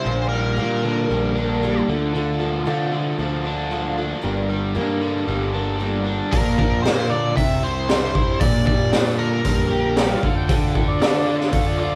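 A gritty live-room sound with moderate studio reverb carries this driving classic rock cut at 115 BPM in G dorian, where a double-tracked overdriven electric guitar riff and a round, fuzzed picked bass run the full length over a boxy, shimmering twelve-string acoustic tucked in the background. A biting lead guitar states its melody at the opening and again from 6.3 seconds, when a raw garage drum kit arrives up front with a high-tuned snare and boomy kick under a rolled-off top. At 10.0 seconds a bright overdriven slide guitar adds a second line just before the chords, having moved through Bb, Cadd9 and Gm/Bb, land on Dm.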